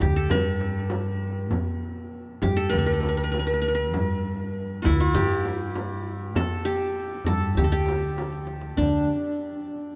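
A bright-edged, plectrum-plucked qanun leads this longing, soulful Arabic maqam piece in G maqam rast at 99 BPM, its triple strings sitting up front over a woody, pizzicato upright bass on steel strings. Behind them, a deep clay-shell darbuka played with hard hands and a warm frame drum sit in the background, and the whole ensemble rings in a vast, echoing cathedral-like space. A drum fill arrives at 8.2 seconds, leading into a new section at 8.8 seconds in this short cut from a longer piece.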